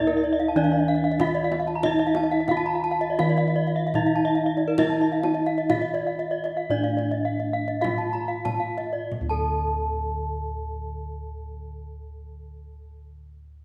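Balinese gamelan in D pelog, brilliant and hypnotic, cut from a longer piece, moving between 44 and 94 BPM in a straight 4/4 and slowing from 1.8 to 9.1 seconds before a new section arrives, with a bright, up-front bronze metallophone struck with a horn mallet carrying the melody, a dark, smooth horn-mallet metallophone and a full, dry, close-miked wooden-mallet metallophone playing ringing arpeggios with the shimmering beats of paired tuning, round, beating bossed gongs holding the bass, and a tight, vintage-sounding, band-limited kendang playing from 0.7 to 9.8 seconds, all set in a moderate scoring-stage reverb.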